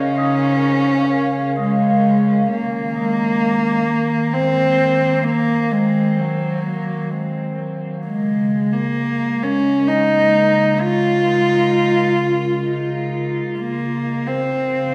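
Soaked in a wet spring reverb and heavy echo, this serene, weightless ambient fragment drifts at 65 BPM in 3/4. A dark, intimate cello carries the melody up front with an airy sul tasto bow and light vibrato through analog delay, while a warbly, lo-fi tape-like pad of detuned square and triangle tones holds sustained chords with chorus, taking on a filter sweep from 2.5 seconds as the harmony moves from a rootless Gbmaj7 through Ebmadd9 and Bbm7. A very quiet, twangy electric guitar picks bright, clean arpeggios through an envelope filter until 3.8 seconds.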